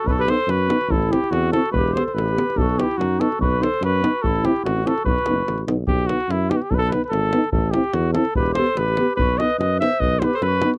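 Balkan brass band folk with a virtuosic, fiery mood, where a warm, punchy trumpet carries the melody up front over a mellow tuba bass, played with scooped notes and a smooth top in a jazz manner, and a tight, close davul. Two euphoniums fill out the accompaniment, one dark and close-miked with light vibrato, the other gentler with vibrato, both with soft attacks. A distant, roomy clarinet plays a shadowy second line in the background, dropping out at 5.6 seconds and returning at 8.4 seconds, all captured in a dry, close 1970s-style studio sound in this short cut from a longer piece.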